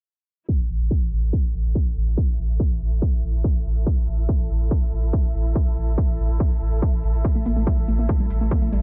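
Hypnotic and dark, this brief excerpt of driving peak-time techno at 142 BPM pairs an overdriven, up-front kick and a very quiet hi-hat with a deep, thick saturated sub bass holding A1, while a distant, woody dark symphonic string section fades in under a filter sweep from 0.5 seconds with sidechain pumping, and a warbling, lo-fi detuned pluck arrives at 7.4 seconds drenched in chorus, cassette tape character and dub echo, all set in a dark, low-passed digital ambience.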